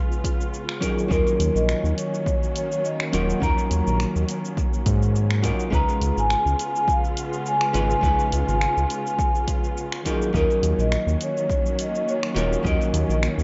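An excerpt of smooth, wistful sunset chillout in Eb minor, opening on a clean, dark hollow-body jazz guitar and a lush, woody string section bowed sul tasto with vibrato, both sounding from the very start over a Db7 chord. Moments later a deep house kit of finger snaps, hi-hat and shaker joins, with a punchy, up-front electronic kick arriving at 0.2 s, and the groove settles at 104 BPM in 4/4 with a light sixteenth-note swing. At 0.8 s a vibraphone played with soft mallets takes the melody, its metallic, ringing tone carrying a slow motor vibrato and a band-limited vintage character, while the harmony moves between Ebm7 and Db7. A round, deep analog bass enters at 1.1 s, sitting up front with a fast attack and a sustained, evolving tone. Tape echo trails the guitar, the vibraphone and the kit, and a moderate spring reverb fills the echo-heavy mix, whose top end is rolled off above 7.7 kHz.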